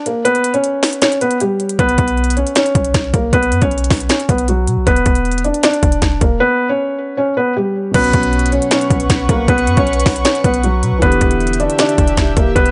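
Lightly reverberant and softly rolled-off, this dark, brooding hip hop trap excerpt in a half-time feel opens on an intimate, felt-muted upright piano melody up front, joined by crisp electronic drums with a hard-clipped kick, sharp snare, finger snaps and crash, then a deep, boomy 808-style bass arrives at 1.8 seconds, and at 7.9 seconds a boxy, long-sustaining concert grand settles in the background beneath an airy, breathy pad with chorus.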